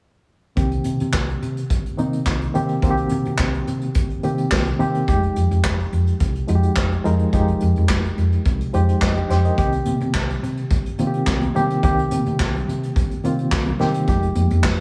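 Joyful and danceable, this disco excerpt moves at 107 BPM in a straight 4/4, cycling between Cm7 and Fm9. A reedy electric piano sits up front with light overdrive and a fast tremolo, heard through its built-in speakers, and it plays a fill from 8.5 to 9.6 seconds. Beneath it, a dark, round hollow-body short-scale bass, fingered and amped, gives a punchy low end. A vintage kit played with brushes carries handclaps, hi-hat, a medium-tuned snare and a punchy kick, its sound roomy and distant yet up front, with a rolled-off top. At 9.6 seconds bright, high-tuned congas with a thin skin join very quietly from a large room, while the whole track sits in a small-room ambience.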